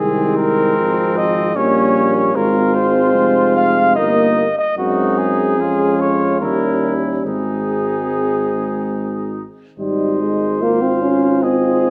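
Heard through a moderate recital-hall reverb, this triumphant classical brass quintet excerpt sways in an uneven, rubato 3/4. An up-front, smooth-topped cornet with light vibrato carries the melody over a distant, roomy trumpet second line and a present, mellow French horn. A far-off trombone and a vintage-toned, warm bass trombone anchor the accompaniment, and the five parts play together throughout the 11.9 seconds as the harmony moves through a cadence to Ab at 7.3 seconds.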